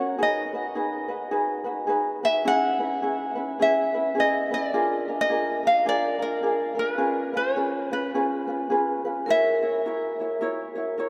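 A lilting swing on the eighths at 106 BPM in 4/4 carries this dreamy, languid Hawaiian excerpt in B major, tuned to A4 = 437 Hz, where a thumb-plucked ukulele plucks mellow accompaniment up front and a bright, fingerpicked ukulele sings the melody from 0.2 seconds through chords like B6, C#m7 and F#7, before a metallic, ringing vibraphone with medium hard mallets and slow motor vibrato enters softly in the background at 9.3 seconds, all bathed in a vast, echoing cathedral reverb.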